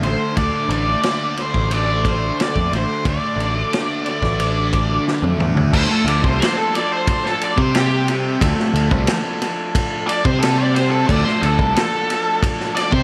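A straight 4/4 groove at 90 BPM drives this dark, trippy psychedelic rock excerpt in D minor, with a punchy, up-front vintage drum kit with a rolled-off top and tape echo under a round, overdriven picked bass and a bright, double-tracked thick fuzz guitar riff soaked in phaser and tape echo, while a distorted octave-fuzz lead guitar with wah and echo carries the melody and takes a solo at 5.7 seconds after a drum fill, as a buzzy combo organ slips in behind with sustained chords over the Dm and C5 changes in an echo-heavy mix.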